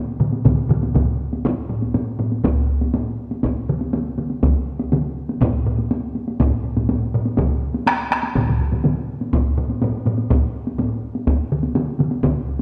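Heavy-stick taiko ensembles open this driving, powerful excerpt of Japanese traditional drumming in a straight 4/4, soon joined at 0.3 s by an up-front solo taiko struck with hard sticks, while one ensemble part carries a compressed, saturated edge and another sits further back, the whole performance gradually speeding up in the long bloom of a scoring-stage reverb until the first ensemble drops out at 10.9 s and the remaining parts stop between 12.3 and 12.6 s.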